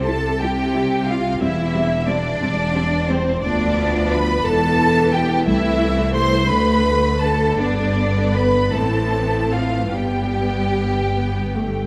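Violins carry a warm melody with vibrato up front over a focused second violin line, cellos in the background and lush, expressive double basses, with violas joining at 0.1 s in a smooth, even accompaniment, in this lyrical, slow romantic movement for string orchestra in 6/8 and C major, moving with rubato at 48-61 BPM through a moderate concert-hall reverb in a passage cut from a longer piece.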